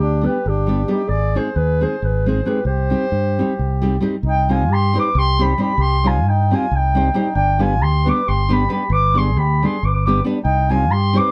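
Fiery and restless, this Balkan folk excerpt, cut from a longer piece, drives along at 269 BPM in eighths in a straight 7/8, set in C harmonic minor with tuning at A4 = 444 Hz. A dark, roomy clarinet carries the melody in a classical style, sitting up front yet with a distant quality as it ranges from G4 up to D6. Beneath it, a mellow, reedy accordion plays a round, airy second line at a lower level, while a full-bodied, fingerpicked nylon-string guitar provides up-front accompaniment from 0.2 seconds. A fingered electric bass, direct and amped with a rounded tone, anchors the low end as the loudest part. The harmony moves from G through Ab to C minor, with the second section beginning at 4.2 seconds, and light reverb adds space to a dark production.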